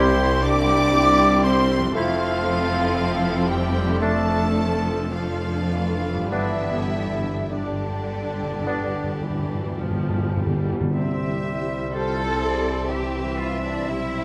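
Lyrical and tender, this slow romantic orchestral movement in C major drifts at 49-63 BPM with a rubato feel, its violin section carrying a smooth, vibrato-rich melody from a distance while a second violin section with expressive portamento, an airy, hollow flute, a bright vintage clarinet and a dark cor anglais weave supporting lines. A mellow bassoon and expressive violas fill the accompaniment, a close-miked French horn section holds sustained chords, a very quiet harp rings out fingerpicked arpeggios, and lush cellos join the even double basses on the bass line, all set in a roomy scoring-stage reverb. A soft-attack trumpet section adds stabs until 9.8 s, timpani with calf heads play a fill from 6.3 s to 10.9 s over the G chord, and the passage resolves to C as a new section begins at 10.9 s.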